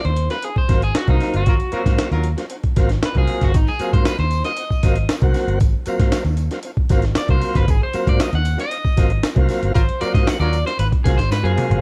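Energetic and playful, this funk cut rides on a gritty, pitched-up breakbeat kit with a thumpy kick and high-tuned snare sitting up front, beneath a dark, round, foam-muted fingered bass over an Ab13 chord. A twangy, slightly broken-up picked electric guitar supplies accompaniment while a clean electric guitar takes the solo throughout. A tonewheel organ adds smooth stabs with key click and a fast rotary speaker, and a distant, roomy horn section with light vibrato slips in at 1.5 and 9.7 seconds during the band accents. A bright, jingly tambourine joins in the background from 3.5 seconds, a drum fill closes the excerpt, and the dry mix carries a cassette-tape character.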